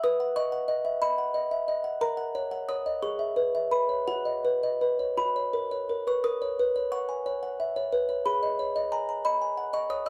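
A dark, warm production with light reverb frames this dreamy, innocent classical lullaby, a brief excerpt from a longer piece. A lone music box, delicate and tinkling, sits up front in a boxy small-room sound, its plucked tones slightly out of tune as it sways freely in a rubato 6/8 lilt. An opening phrase gives way at 6.2 seconds to a contrasting passage that carries the melody through to its close at 10.1 seconds.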